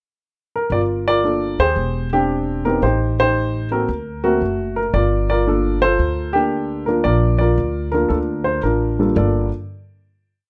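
A mellow, dark baby grand piano, its action noise audible up front, carries hook-driven motifs and syncopated rootless comping from 0.6 s over a woody pizzicato upright bass in a two-feel, making a cool, late-night jazz piano trio piece in G minor at 114 BPM with a swung 4/4 lilt, light reverb, and a Gm9–E7alt–Am7b5–D(b13) progression that settles on a final chord at 9.2 s.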